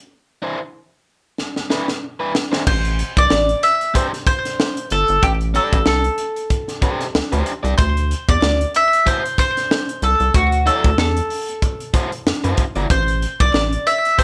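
A picked bowl-back mandolin with doubled strings and slapback echo carries the melody up front from 2.7 seconds in this sly, hypnotic funk excerpt, joined by a rubbery, hollow square bass, a crunchy overdriven electric guitar that opens the piece at 0.4 seconds, and a crisp fusion kit with bright cymbals, a high-tuned snare and a punchy kick whose fill at 1.4 seconds launches the groove in a moderate club reverb.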